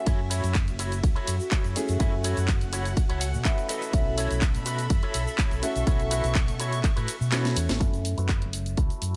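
A bright, twangy electric guitar run through an envelope filter carries the riff in this funky, groovy filtered disco house cut, set in F# minor at 124 BPM in a straight 4/4. Beneath it, a punchy, up-front electronic kick and a dark, round fingered bass anchor the groove, while a house kit with a cracking snare, handclaps, cabasa, hi-hat and ride adds motion, its hats, cymbals and percussion pumping against the kick, and a very quiet tube shaker sits close in the mix. A polished grand piano with long sustain plays phased accompaniment, and a studio string section holds soft-attack, bowed sul tasto chords with vibrato. Apart from the drums and shaker, every part is pumped and low-pass filtered, and the harmony moves from F#m7 to B7sus4 and back. A clean guitar fill appears twice, and near 7.3 seconds the kick drops out for a drum fill before the strings fall away at 7.8 seconds and a filter sweep takes over the closing stretch. 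The sound is dry, with little reverb, and tape-warm, small-room drums, and it is cut from a longer piece.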